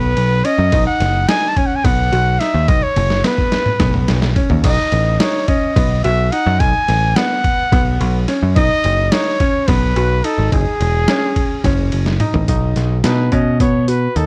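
Set in a straight 7/8, this tense, intricate progressive instrumental excerpt rides on an up-front, sampler-style trip hop kit (compressed, pitched down and muffled, with a thumpy kick and a tape-tinged small-room tone) that enters at 0.2 seconds and breaks into fills at 3.0 and 12.1 seconds. A punchy, direct picked electric bass sits up front beneath a clear, worn grand piano tracing short-sustained arpeggios. Over them a mellow jazz trumpet carries the solo melody with vibrato and scooped notes, heard in a dry, close 1970s-style studio sound.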